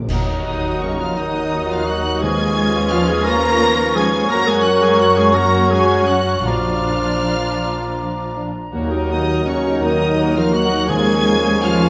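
Classical: a slow, solemn and melancholic romantic movement for symphony orchestra in 6/8 with rubato, cut from a longer piece and set in a concert hall's moderate reverb. After a dry accent from clash cymbals and concert bass drum and round, soft-mallet timpani at the start, a distant violin section with vibrato carries the melody high above a smooth second violin line, while airy silver flute, mellow cor anglais, clarinet and bassoon add distant lines in the background. Rich, even violas above and double basses below frame expressive, close cellos. A very quiet, clear trombone section enters at 0.8 seconds holding sustained chords, and a dark French horn section joins it at 1.2 seconds.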